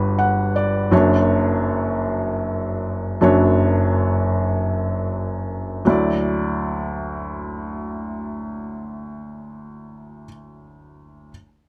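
A felt-muted upright piano plays alone, its soft, intimate tone sitting up front in this brief folk passage cut from a longer piece. The mood is hopeful yet nostalgic, moving in a gentle 6/8 at a slow pulse of roughly 41-54 beats per minute, counted in dotted quarters, in D major. The harmony drifts from Gmaj7 to Dmaj7/F#, while the pace gradually slows between 0.9 and 5.9 seconds. At 5.9 seconds a new section opens on a Dadd9 chord. Close, detailed miking with little reverb brings out the thin felt and mellow, natural character of the instrument across its span from F#1 to F#5.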